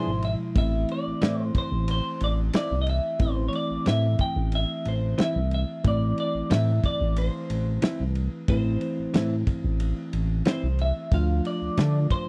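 A smooth, gliding synth bass with a dark sawtooth-and-square tone sits up front in this brooding, mournful straight-eighth soul blues excerpt, joined by a dry acoustic drum kit with a tight kick and shadowy cymbals, clean tine electric piano chords, compressed picked stabs from a direct-recorded clean electric guitar, and a hollow-body electric guitar melody shimmering through lush chorus, all moving from E7b9 into a long stretch of Am before turning to Dm at 11.1 seconds in a close, nearly reverb-free sound.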